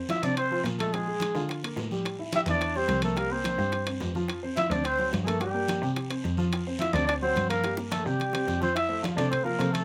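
A growling trumpet stands up front with the melody, its gritty, distant tone carrying a roomy edge over this fast, danceable Afro-Cuban jazz excerpt at 215 BPM in 4/4 and F major. Alongside it, a breathy tenor saxophone adds a second line in jazz style, marked by scooped notes. An intimate baby grand piano supplies accompaniment, its action noise audible. A rich, bowed cello with smooth vibrato carries the bass. Percussion fills out the groove: bright, damped congas in the background, round, low-tuned bongos kept very quiet, ringing metal-shell timbales heard close and dry, and a raspy guiro set far back in a large room, all under light reverb. The sophisticated harmony moves from F through Bb7 and Am7, a drum fill runs from 7.6 to 8.8 seconds, and the piece lands on Fmaj7 at 8.8 seconds before the recording is cut off.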